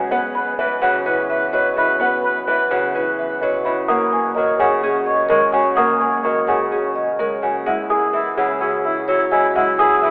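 This is minimalist classical pattern music in a straight four, cut from a longer piece, with an urgent, hypnotic pull. A marimba played with soft mallets carries the melody in a woody, round tone, and a mellow oboe with light vibrato enters at 0.1 s to add a second line. A dark, boxy grand piano spins arpeggios alongside a delicate, bell-like celesta that sits in the background, slightly out of tune. A ringing, fingerpicked Celtic harp supplies the accompaniment. The harmony moves from F#7sus4 to D#m7, and at 7.7 s a new section settles on C#madd9, all heard through a long cathedral reverb with a telephone-like sound.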